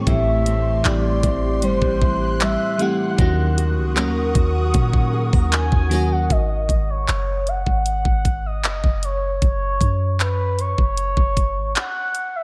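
The mellow, horn-like synth lead carries the melody through this contemporary R&B excerpt at 77 BPM in a straight 4/4, its round sawtooth tone shaped by a soft attack, vibrato, chorus, phaser and analog delay. Beneath it sits an electronic trap kit with a knocking kick, bright hi-hats and handclaps, alongside a deep, boomy 808-style bass whose dark sine tone decays after each note. Over the opening chords of Am7 and D#m7, a lush, detuned FM electric piano, an ethereal, airy pad with ensemble chorus and a fingerpicked classical nylon-string guitar with lush chorus and analog delay fill out the harmony. The piano and pad stop at 6.3 s and the guitar at 6.9 s, leaving the lead, bass and drums over an F#sus2 chord. The dreamy mix is soaked in plate reverb, giving the piece a longing, late-night mood.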